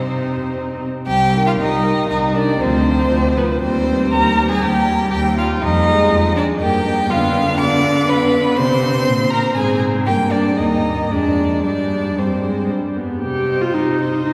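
A string quartet enters together in a lively, spirited classical-period movement in C minor, in 3/4 at 110-123 BPM with a rubato feel and tuning at A4 = 437 Hz: the first violin sings a rich, expressive melody with vibrato and portamento over a warm, smooth and even second violin line, a focused, distant-sounding viola accompaniment and an up-front cello bass, all four bowed with vibrato and bathed in a wet cathedral reverb heard from further back in the room, while the harmony moves through Fm7, Gsus4 and G before settling on Cm at 13.2 s in this passage cut from a longer piece.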